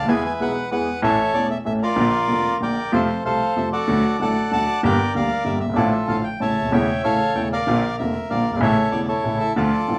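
Tense and passionate, this tango excerpt in 3/4 at 190 BPM moves with a rubato feel as a reedy, dark, smooth bandoneon carries the melody up front over a polished concert grand piano whose deep bass, long sustain and audible action noise give its close accompaniment an intimate presence, all set in a wet studio ambience with vinyl crackle while the harmony passes through E, A, Bb, F, D and Gm before returning to A.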